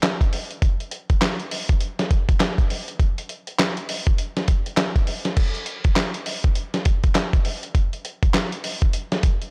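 A dusty, sampler-style soul drum kit carries this short R&B excerpt on its own, its thumpy kick, medium-tuned snare, hi-hat, handclaps and crash cymbal sitting up front with a gritty, compressed, tape-warm character. At 101 BPM in 4/4 with a 61% swing on the sixteenths, the groove feels bouncy and flirty, moving from one section into another at 5.4 seconds. The production is dark and warm, with a light reverb and the small-room tone of a re-recorded kit.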